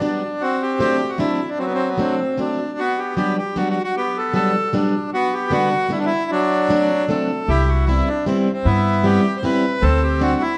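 Dark, warm production and a wet recital-hall reverb frame this short, charming and nostalgic musette waltz, cut from a longer piece and played with a rubato feel in three. A reedy, mid-forward accordion carries the melody up front over a boxy, picked swing-style acoustic guitar, moving through chords such as D7, Gmaj7 and Cmaj7. At 7.5 seconds a woody, thumpy pizzicato upright bass with gut strings joins up front before the harmony moves to D7sus4.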